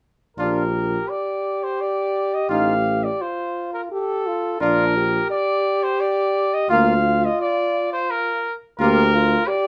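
A mellow cornet sits up front with the melody, its soft attack and distant, roomy tone giving this short cut from a longer classical brass quintet piece a noble, triumphant bearing. A clear trumpet holds a second line on a single F4, while a French horn with light vibrato and a close-miked trombone, set in the background, fill in the accompaniment. The tuba anchors the bass, also up front, with a gentle onset and a similarly far-off, spacious quality. In 3/4 time, the harmony moves from Bb through F/A and back to Bb, then Bb/D, within a moderate studio reverb. The five parts begin together at 0.4 s; the trumpet and trombone stop at 9.0 s, and the cornet and horn carry on to 9.7 s.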